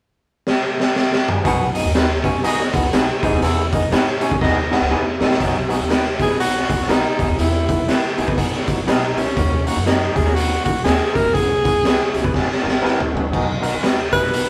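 Uptempo 1960s-style soul at 121 BPM in B major, danceable and uplifting with a swung 4/4 feel, this excerpt opens on a raw garage drum kit up front, lo-fi and muffled with a punchy kick and high-tuned snare, before upright bass thumps in with woody gut-string pizzicato and an overdriven tine electric piano adds barky fast tremolo chords in the background. From 1.5 s a slightly broken-up electric guitar through a small old amp and a growling, raspy baritone saxophone play a riff together, joined briefly by a clear horn section with octave doubling on a second line, while a second guitar through a small old amp drops spring-reverbed stabs. At 6.2 s a breathy tenor saxophone takes the melody with soft attacks and scooped notes over a B6, Emaj7, D#m7 and C#m7 progression, with drum fills marking the turns in a live one-room sound.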